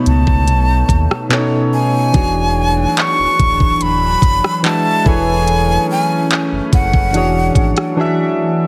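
A breathy jazz flute carries the melody with vibrato and a touch of delay, its metallic, unsteady tone sitting up front in this moody, longing contemporary R&B piece at 72 BPM in 4/4. Soft, round electric-piano-like synth keys with chorus and a glassy, ethereal FM pad in the background move through B9, E13 and Amaj9/E. Beneath them, a deep sine sub bass with octave anchors the low end under a trap kit of knocking kick, crisp hi-hats, handclaps and rim clicks. The sound is dry and heavily compressed, and the drums fall silent at 8.0 seconds in this short cut from a longer piece.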